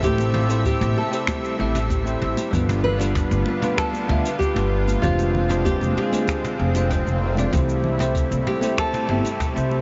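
Sunset chillout in C major at 96 BPM, this blissful, sunny excerpt moves in a straight 4/4 through a chord cycle of Am7, G7, Fm6 and C6, all under a huge, dreamy reverb with a softened top end. A fingerpicked nylon-string guitar carries the melody in a deep classical tone, its notes trailed by a diffuse ambient delay, while a bell-like tine electric piano, clean and direct, supplies accompaniment through tape echo. A lush unison pad, thick and airy with detuned sawtooth and square-wave layers, a breath of noise and a soft attack, holds sustained chords with chorus. Up front, a woody, thumpy pizzicato upright bass anchors the low end, joined by a deep, tape-warm analog electronic kick that sounds re-recorded in a large room. A vintage brush kit, dark and smooth with a rolled-off top, adds cabasa, finger snaps, hi-hat and toms, while high-tuned, thin-skinned congas sit in the background, and a very quiet electronic swell sounds between 6.7 and 7.5 seconds.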